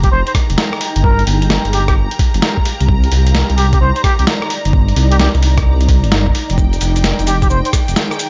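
A soulful, moody two-step UK garage excerpt in C minor at 130 BPM opens with a breathy plunger-muted trumpet melody wearing dub echo and scooped, wah-wah notes over a deep, rumbling detuned saw bass up front, a thumpy electronic kick, a gritty sampler-style kit of swung hi-hat, rim click, shaker and medium-tuned snare, an earthy violin section holding background chords with sidechain pumping, and a cloudy, evolving granular pad with its own reverb and pumping, all moving through Fm11, Gm7 and Cm9.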